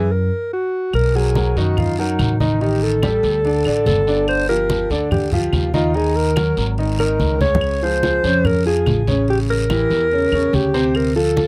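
Lively and sophisticated, this dry, close Afro-Cuban jazz excerpt in straight 4/4 opens on a brief stop, then background claves, thick-skinned low-tuned congas and a raspy, saturated guiro enter at 0.9 seconds beneath a dark, smooth-topped alto saxophone solo with vibrato and subtone, a clear concert grand piano with deep bass and long sustain, and a growly, woody pizzicato upright bass, with a drum fill at 7.4 seconds as rich chords such as Bmaj7, Gm7 and A7b9 pass by.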